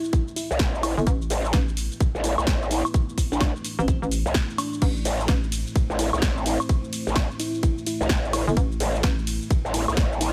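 Swung sixteenths drive this aggressive, swaggering bass house passage at 128 BPM in 4/4, where a tight, up-front electronic kick and a big-room dance kit with a punchy snare, hi-hat, shaker, ride, crash and woodblock sit in studio reverb beneath a growling, saturated, wobbling bass that enters at 0.5 s with chorus and sidechain pumping, a hollow, bouncy knocking FM bass with overdrive that drops in at 1.0 s and returns at 8.5 s, a sparkling bell-like FM electric piano melody with chorus and dub echo floating in the background, and a deep, moody analog pad pumping on sustained chords, all held on a single A minor chord in this excerpt from a longer piece.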